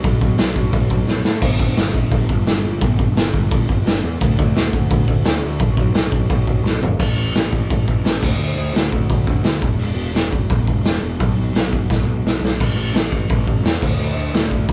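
A fuzzed, growly picked electric bass and a raw, up-front garage drum kit crash in together from the start, driving an aggressive, angry punk rock cut at a straight 172 BPM in 4/4. The drums sound lo-fi and saturated in a small room, with a punchy kick, a medium-tuned snare, dark cymbals and a muffled, rolled-off top, while the overdriven bass stays bright and direct in a low register. Taken from a longer piece and recorded live in one room with little reverb, it moves into a new section at 7.0 seconds, and drum fills around 6.6 and 11.9 seconds push it forward.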